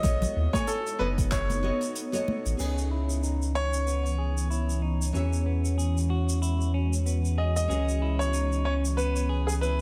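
A 94 BPM groove in 4/4 with swung sixteenths sets up this smooth sunset chillout passage in C# minor, cut from a longer piece: a round sub bass sits up front, a soft brush kit with dark cymbals, hi-hat, shaker, handclaps and crash plays throughout, a deep layered electronic kick drops out at 1.5 s, and close, dry congas stay in the background until 2.4 s. A brilliant grand piano carries the melody with tape echo over fingerpicked, full-bodied nylon-string guitar (also echoed) and an ethereal, detuned pad with ensemble chorus and its own reverb, moving through B9, C#m9 and E69 chords. From 2.6 s a twangy clean electric guitar adds picked arpeggios through spring reverb, tape echo and a filter sweep, while the pad is swept too, all in a light small-room ambience.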